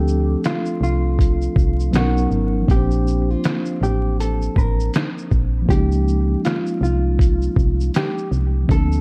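A gently swung 80 BPM groove in 4/4 opens this mellow, cosy lo-fi hip hop fragment, with a muffled, pitched-down sampler-style drum kit entering at 0.1 s to place thumpy kick, medium-tuned snare, hi-hat, shaker and finger snaps up front beside a punchy, round FM bass. A tine electric piano, heard through its built-in speakers, carries the chords from Dm7 through Bmaj9 and Bbmaj9 to Db69, while a clean, compressed hollow-body jazz guitar picks the melody. The production is dark and warm, with light reverb and vinyl crackle.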